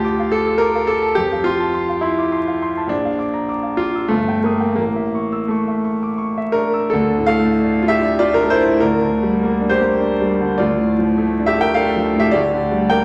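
Vinyl crackle sits under a wet recital hall reverb with a 1.4-second decay, framing this bittersweet, passionate cut from a longer romantic character piece for solo piano. A clear concert grand sits up front in the mix, natural in tone, with a deep bass and long sustain across a range from G1 to E6. In D minor and 3/4 time, the playing moves with rubato between 78 and 108 BPM, tuned to A4 = 438 Hz. The opening phrase passes from D minor through F, B-flat and E-flat over G before reaching A. A new section begins at 6.9 seconds, returning to D minor and rocking toward G minor over D before the fragment closes at 13.0 seconds.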